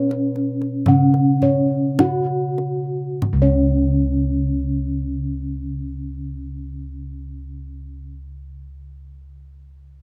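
A straight 4/4 pulse moves slowly, between 47 and 60 BPM, easing down over the first 3.2 seconds of this serene, ceremonial Javanese gamelan passage, cut from a longer piece. Up front, a bronze metallophone struck with padded disc mallets carries the melody between C#4 and F#4, its paired tuning producing shimmering beats around a mellow, airy ring. Higher bossed gongs play arpeggios from C#5 to F#5 with a round, soft tone, a boxy small-room colour and a slapback echo. Lower bossed gongs, set a little further back, hold the bass from C#2 up to B4-25c. A deep, close and dry kendang drum plays only until 3.8 seconds, after which the metallic parts carry on through the second section to the end. The recording has little reverb and an open outdoor feel.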